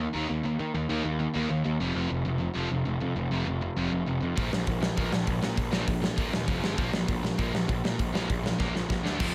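Dry and close-sounding, this rebellious, upbeat punk rock cut at 199 BPM sets two sludgy overdriven guitars, one dark and one warm, playing riffs in the background beneath a growly fuzz bass up front; a big-room drum kit with a fat snare and punchy kick enters at 4.4 s and plays a fill at 8.6 s, and a bright, double-tracked distorted guitar cuts in at 9.2 s.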